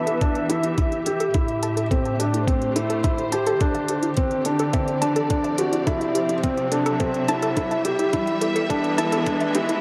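A straight 4/4 pulse from a muffled, pitched-down electronic kick and smooth, overdriven hi-hat and woodblock drives this melancholic, intimate piano and strings electronica build-up, where a soft, felt-muted upright piano riff with audible action noise and digital delay sits up front over lush, woody bowed string chords that pump and sweep through a low-pass filter, while a warbling lo-fi pluck arpeggio with chorus, pumping and delay hovers in the background beside an electronic riser, the whole mix set in a dark, wet hall reverb.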